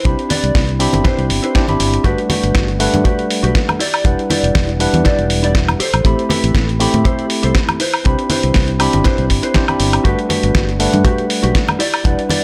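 A small room's reverb gives this short, sunny nu-disco cut a close, intimate sound, with a tight, polished kick sitting dry and airy at 120 BPM in 4/4 with a light sixteenth-note swing. Up front, a clean tine electric piano carries the accompaniment through a delay, moving through Cmaj7, Gmaj7, Em7 and Am7 chords. A mellow, dark electric guitar plays a compressed riff colored by analog chorus, 12-bit sampler grit, a low-pass filter and delay. A fingered electric bass, amped and warm, anchors the low end from 0.1 seconds, while a gritty sampler-style kit adds hi-hat, woodblock and a fat snare. Soft-handed congas enter at 0.3 seconds and sit bright in the background, keeping the groove light and buoyant.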